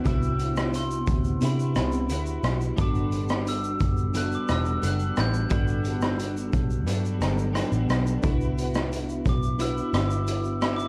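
Hazy and tape-worn, this short excerpt from a longer indie and bedroom pop piece sits in a studio reverb with a cassette softness over it, its mood laid-back and hazy in a straight 4/4. A raw garage drum kit sits up front with a punchy, saturated kick, gritty hi-hat, rim click and shaker, its top rolled off in a small-room sound, while a vintage muted electric bass adds a dark, round, foam-muted low end. A clean, compressed twelve-string electric guitar carries the chords through an ensemble chorus with a warbly pitch drift, moving between Cmaj9#11 and Gmaj7. Lo-fi synth keys, detuned and nostalgic with pulse and sawtooth tones, warble in the background through chorus and cassette tape, stepping forward with a fill from 7.2 to 8.2 seconds. Above it all, a glockenspiel struck with soft plastic mallets rings out a bell-like, metallic melody through lush chorus and analog delay, taking a solo turn from 8.2 seconds as the harmony returns to Cmaj9#11.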